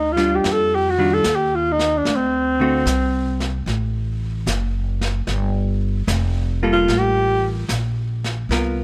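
The sound is dry and close, with little reverb, so this short slice of a longer jazz ballad feels intimate and wistful. At a slow 74 BPM in 4/4 with a gentle swing on the eighth notes, a breathy alto saxophone sits up front and carries the melody as a solo, its subtone voice smooth on top and touched by light vibrato until it drops out at 7.5 seconds. Beneath it, a woody pizzicato upright bass on steel strings, also placed forward, holds the low end from the first moment. A dark, clean hollow-body electric guitar and a vintage brush kit join at 0.2 seconds; the guitar's picked chords move from Ebmaj9 to D7 to Gm9, while the brushed snare and hi-hat stay soft, smooth and rolled-off in the background. The tuning sits slightly below standard pitch at A4 = 436 Hz, adding to the melancholic mood.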